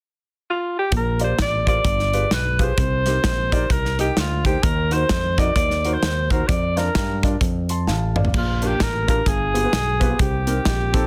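Uptempo gospel at 130 BPM in Bb major, hopeful and reverent with a swung lilt, where a breathy, subtone alto saxophone with scooped notes enters alone at 0.5 s to carry the melody up front, joined at 0.9 s by short-sustain concert grand piano, a growly, punchy fingered electric bass and a tight, small-room drum kit whose fill at 7.9 s leads into a new section at 8.3 s, all under light reverb in a dense, heavily limited modern master.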